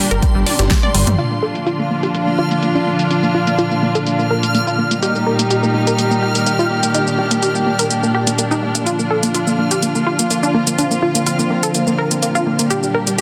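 A straight 4/4 progressive house pulse at 125 BPM in Bb major sets an uplifting, expansive mood, as a deep electronic kick, a gritty, very quiet breakbeat sampler-style kit and a punchy, ring-modulated analog bass all drop out by 1.2 seconds, leaving an overdriven deep house kit with fat snare and metallic hats under a filter sweep, while a dark, sul tasto string section holds sustained chords, a lush detuned unison pluck plays delayed arpeggios under its own sweep, and a reversed, granular, bright swelling texture floats high above, the sustained parts pumping to the sidechain in a huge ambient reverb over Gm, Bb and Eb in this excerpt from a longer piece.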